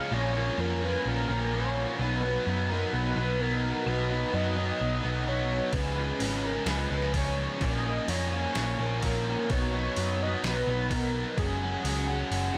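A straight 4/4 pulse at 128 BPM carries this dreamy, blissful shoegaze and dream pop passage, cut from a longer piece. A biting, overdriven guitar riff, double-tracked, up front and bathed in lush chorus, opens alongside a dark, round, punchy hollow-body short-scale bass and a velvety synth lead whose detuned sawtooth, triangle and sine layers, sub octave and vibrato give the melody a smooth, sustained glow through chorus and analog delay. At 5.7 seconds a crisp 8-bit drum machine joins with hi-hat, a thumpy kick and a medium-tuned snare, sounding sampler-like and tape-warm, as though re-recorded in a small room. The harmony moves through A#m, Badd9, C# and back, settling on F#sus2 near the close. A huge ambient reverb with a long 4.3-second tail suspends the whole mix in a hazy wash, and the kick and snare drop away at 12.3 seconds.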